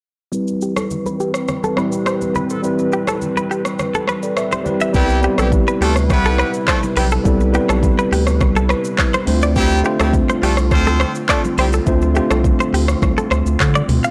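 Afrobeats at 104 BPM in a straight 4/4, this romantic, breezy piece in C major is cut from a longer track and tuned slightly flat of standard pitch. From 0.3 seconds a worn, slightly out-of-tune tine electric piano plays the accompaniment under a filter sweep, joined by an electronic afro-pop kit up front with a deep kick, metallic hats, handclaps, rim clicks, shaker and toms, carrying a 12-bit sampler grit and soft clipping on the snare. A bright, twangy clean guitar riff with delay and an airy, breathy pad in the background soon follow, while very quiet congas with soft hands add thick-skinned color. At 4.9 seconds a round, dark analog bass sits up front, and a horn section with light vibrato and octave doubling plays a second line until 11.7 seconds. The harmony moves from Cmaj7 to Dm7, and the whole recording sounds dry, blown-out and overdriven.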